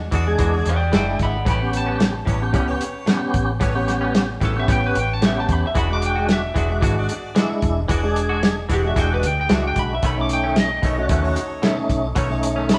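A round, foam-muted fingered bass opens this gritty, laid-back soul blues excerpt, joined within a second by a muffled, up-front drum kit, twangy clean guitar stabs, a lightly overdriven organ on slow rotary speaker, and a bright horn section holding background chords, while a dark, slightly broken-up lead guitar enters at 0.7 seconds to solo over E9, A9 and B9 chords in a live stone-room reverb.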